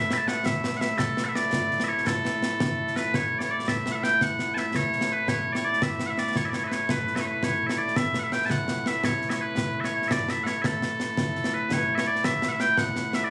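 Loud, piercing bagpipes open this short, stirring cut from a longer piece of Scottish pipe music, carrying a continuous solo melody up front in a straight 6/8. Concert snare and bass drum join at 0.1 seconds, sounding close and dry with dark cymbals, giving the brief passage a ceremonial character. The whole has the feel of a phone recording made in a club room, with a short opening phrase giving way at 3.1 seconds to a longer strain that repeats at 11.7 seconds.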